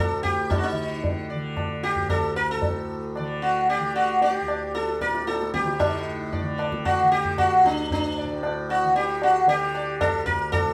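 Set in a straight five-beat cycle, this radiant, serene Hindustani passage, cut from a longer piece, opens with a bright, plectrum-plucked sitar up front, its buzzing tone ringing with sympathetic strings, over a softly plucked, warm tanpura drone that sits low beneath it. A high-tuned tabla with a short ring joins at 0.2 s, and the music moves into a new section at 5.8 s. The trio plays live together in one room, wrapped in a wet studio reverb, while both the sitar and the tanpura carry a shimmering glow.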